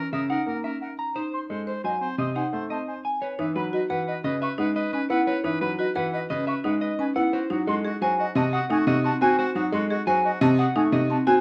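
Lightly reverberant and darkly warm in its production, this brief cut from a longer classical minimalist pattern piece moves at an urgent, hypnotic 175 BPM in 6/4, settling into C# minor at 3.2 s after opening on rootless F#7 and G#(b9) harmonies. A clean, picked semi-hollow electric guitar carries the melody over a brilliant, up-front baby grand piano with short sustain in the low accompaniment, while a woody, buzzing marimba with medium hard mallets and a soft-attack, distant concert flute spin arpeggios. From the very start, a present, lightly vibrato oboe adds a quieter second line, and the harmony later shifts from C#m9 to G#7b9/B# at 7.3 s.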